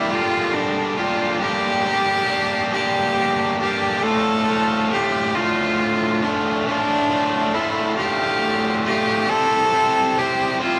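Rock with a brooding, cinematic mood unfolds in a slow 6/8 feel, cut from a longer piece. A single bowed cello carries the melody in a clear, earthy voice with light vibrato, sitting up front for the full 10.8 seconds. Beside it, an overdriven electric guitar plays a picked, double-tracked riff that is bright and equally forward, its tone coloured by spring reverb. The harmony moves from Gm7 to Dm at 4.0 seconds, then reaches C at 9.3 seconds. The two players sound as if performing live together in one room, with moderate studio reverb giving the space a natural depth.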